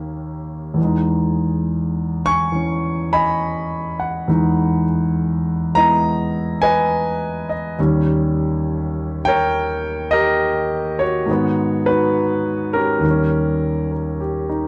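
A dark, intimate production with light reverb places a concert grand piano up front, its deep bass, long sustain and audible action noise giving the solo a close, natural presence. This fragment of a longer solo jazz piece unfolds at an unhurried swing, moving through a smoky, cool progression of seventh chords from D#7 to Emaj7 and back, touching G#m7 before settling on D#7 again at 13.0 seconds.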